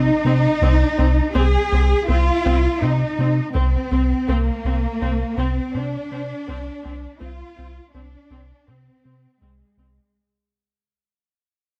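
Cinematic and brooding, this tense piece in straight 4/4 is cut from a longer work and tuned slightly low, to A4 = 435 Hz. A smooth, gliding synth bass carries the riff up front, its sawtooth and triangle tones sustained under a moving notch filter, with vibrato and portamento sliding between notes from C2 to C3. A warm, expressive cello section plays the bass line with bowed vibrato, also close and prominent, while a lush viola section holds a single C4 in the distance as accompaniment from 0.3 s. A very quiet electronic impact marks the opening, ending at 1.4 s. The harmony moves from Cm through Ab/C and Bb/C to Fm/C over a constant C, and the whole passage fades out in a close, detailed recording with light reverb.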